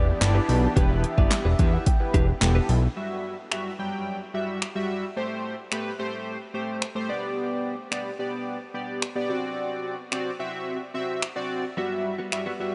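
Dance-pop excerpt at 109 BPM in E minor, confident and bittersweet, where a fat, saturated analog bass, a velvety chorused lead, a soft supersaw and a clean direct-recorded guitar riff share the opening seconds over a glossy, pumping polysynth and a punchy, overdriven deep house kit of kick, snare, hi-hat, handclaps and finger snaps that carry on alone until the guitar returns at 11.8 s, all under light reverb with chords moving from Em7 through Am7, G/B and D7.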